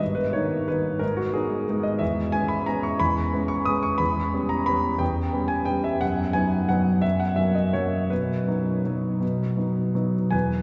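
A clear concert grand piano opens alone on a D#7/G chord, setting a playful, elegant classical waltz in B major. The pace sits between 157 and 189 BPM in 3/4, with a rubato feel that lets the beat stretch and give. The solo piano spans from deep bass notes up to the high treble, its tone intimate and natural, with the sound of the instrument's action audible close up. A cathedral reverb with a long 5.3-second tail surrounds it, so the listener seems placed further back in a large, resonant space even as the piano itself sounds up front. The harmony passes through G#m and C#m7/E, darkens briefly on C#m7b5/E, then settles through B/F# and F# to come home on B at 8.1 seconds, before this short cut from a longer piece ends at 10.6 seconds.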